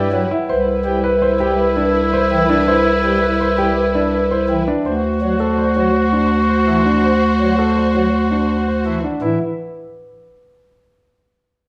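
Minimalist classical pattern music at 165 BPM in 6/4, meditative yet urgent, where a woody soft-mallet marimba carries the melody from 0.1 s in the background over a piano's short-sustain arpeggios, a lush bowed string section holding chords, an oboe's light-vibrato second line, a full principal-chorus pipe organ with baroque voicing and chiff, and an up-front mellow bass clarinet on the bass, all moving from Cmaj7 to D7 in a moderate large studio reverb in this excerpt cut from a longer piece.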